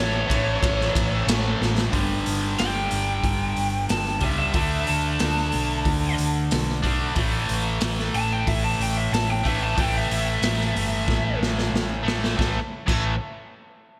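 A bright 1980s-style digital production wraps this swaggering, powerful hard rock cut in a lush hall reverb, taken from a longer piece in a straight 4/4. Up front, a double-tracked, picked electric guitar drives a bright overdriven riff over chords moving from A through G5, D5 and A5. A hollow-body short-scale bass, fingered and amped, adds a round, punchy low end beneath it. The raw garage drum kit, entering at 0.3 seconds, sounds gritty and saturated in a small pumping room, with a boomy kick, medium-tuned snare, dark cymbals and gated reverb. After a drum fill, a dark, overdriven lead guitar from a small cranked amp, thickened by lush chorus, takes a picked solo from 1.9 seconds and drops out at 11.4 seconds as another fill closes the passage.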